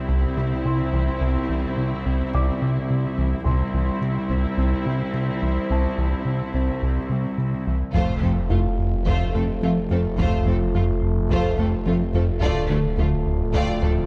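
A straight 4/4 pulse at 107 BPM drives this brooding, relentless fragment of hybrid orchestral and electronic film score: a deep analog bass riff, tine-like synth pluck arpeggios, a felt-muted upright piano with delay and audible action noise, and clear viola and cello sections build over C, with a taiko ensemble striking briefly with hard sticks at 3.5 seconds, until at 7.9 seconds the harmony moves to F and lush violin sections carrying the melody and a second line, a double bass section, background trombone chords and a swirling, phased detuned saw bass arrive as the taiko returns, shifting to D minor at 12.4 seconds within a moderate scoring-stage reverb.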